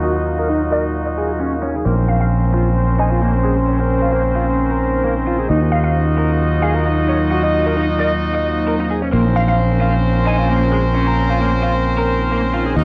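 Breakbeat at 132 BPM in Bb minor, this funky, swaggering excerpt rides a lightly swung 4/4 groove over chords that move between Ebmadd9 and Bbmadd9. A fingered electric bass sits up front with tube-saturated heft, while an overdriven, double-tracked electric guitar plays a picked riff roughened by vintage 12-bit sampler grit, a low-pass filter and analog delay. A bright horn section punches in with stabs, its ensemble sound carrying light vibrato and octave doubling, also treated with analog delay. Beneath them a deep, moody ambient pad holds sustained chords, its detuned sawtooth tones evolving through chorus and built-in reverb. From 0.7 to 10.7 seconds a glassy wavetable pluck traces a crystalline, nasal melody in the background, given an AM radio sound and spread with chorus and delay. A filter sweep runs across the whole clip, and plate reverb plus vinyl crackle give the mix a dusty, lo-fi sheen.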